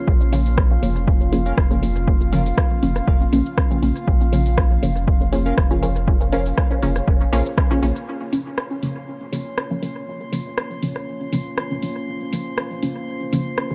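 Hazy and deep, this dub techno excerpt moves at 120 BPM in Bb minor, built on a muted, filtered dub chord stab with phaser, dub echo and filter sweeps, set over a dark, detuned analog pad and a drifting glass-harmonics texture of calm, glassy overtones, all three pumping with the sidechain. An overdriven, up-front electronic kick and a round sub bass drive the first half until about 7.9 seconds, while a tape-warm analog drum machine keeps cabasa, hi-hat and rim click ticking through dub echo to the end. Between 1.5 and 7.4 seconds, warbly lo-fi synth keys add a nostalgic riff in the background, all captured in a dry, gritty hardware recording with digital ambience.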